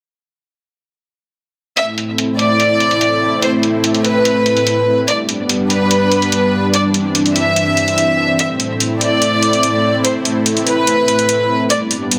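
Chaotic and aggressive, this heavy wobble dubstep excerpt runs at 145 BPM in 4/4 with a half-time feel, set in A minor and tuned to A4 = 439 Hz. A studio violin section carries the melody from 1.8 to 11.8 seconds, its bowed ensemble tone pure and floating with a soft attack, sul tasto sheen and a smooth top, placed up front and trailed by dub echo. Beneath it a supersaw pad holds sustained chords, lush and full-bodied, built from detuned unison sawtooth layers with a sine sub octave and a slow attack, also sitting up front. An electronic hi-hat, layered and re-recorded in a large room, keeps time through a low-pass filter on both the hats and their room sound. The harmony moves from Am to G, then Cadd9/G, and back to Am, all inside a moderate digital reverb and a dense, heavily limited modern master.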